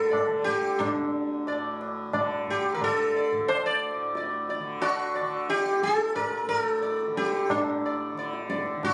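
In a straight 5/4 at 90 BPM, this radiant, devotional fragment of Hindustani classical music, tuned to A4 = 439 Hz, sets a bright, buzzing sitar up front with plate reverb, its plectrum-plucked melody moving between D4 and D5 over shimmering sympathetic strings. Beneath it, a softly plucked, warm tanpura sustains a low drone from D2 to D3, while high-tuned, ringing tabla sound distant, as if in a large room. Captured on a phone in a club-like space with moderate reverb, the passage moves into a new section at 7.5 seconds before ending at 8.9 seconds.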